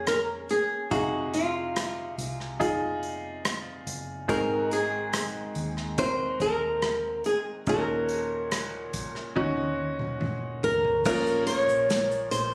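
Heartbroken and longing, this slow pop ballad in Bb minor at 71 BPM sets a fingerpicked flamenco guitar melody, fresh-stringed with audible finger squeak and tape echo, up front over a brilliant, woody upright piano, a round, foam-muted vintage electric bass, and a small-room acoustic drum kit played with bundle sticks whose fill from 9.4 to 11.1 seconds leads to a chord change as a grainy tube shaker enters in the background at 11.1 seconds, all in light reverb and studio ambience, recorded on a phone in the room, cut from a longer piece.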